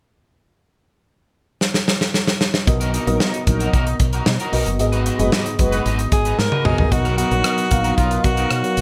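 Over a straight 4/4 groove, a punchy studio drum kit opens with a fill at 1.6 s, then a dreamy FM electric piano with a soft pad layer, a round, woody fretless bass, and a twangy, slightly broken-up electric guitar riff with chorus and delay come in from 2.7 s, with dark, detuned synth brass stabs joining at 3.1 s, until a bright alto saxophone with vibrato steps up front with the melody at 6.1 s, giving this uplifting, romantic 1980s-style pop excerpt a lift within a small room.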